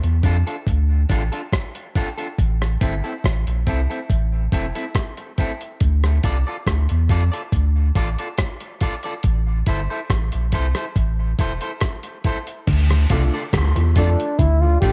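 Hypnotic and meditative, this dub reggae fragment rides a straight four-count pulse while cycling between two minor chords. From the start, a deep, round sine sub bass and a gritty, compressed sampler-style drum kit sit up front, the kit's thumpy kick, hi-hat, rim click and crash carrying a tape-worn tint. A slightly broken-up, picked electric guitar adds accompaniment through dub echo, and the home cassette recording sits in a digital ambience. At 12.7 seconds a dark, clean guitar with an envelope filter and tremolo picks out a riff in the background, joined at 13.1 seconds by woody, boxy piano stabs with echo. A breathy, whispered flugelhorn with vibrato arrives at 14.0 seconds for an intimate, mellow solo melody trailed by dub echo, just before the fragment breaks off.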